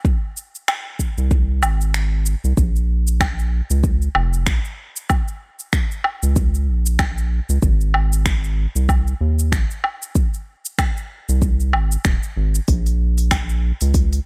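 Set in digital ambience with a small-room feel on the drums, this mystical, hypnotic organic downtempo cut from a longer piece moves at 95 BPM in Bb minor with a 16th-note swing, as an up-front deep electronic kick and a layered deep house kit of finger snaps, smooth hi-hat, shaker and woodblock carry the groove, joined at 1.2 seconds by a round, nasal, dark analog bass with sidechain pumping.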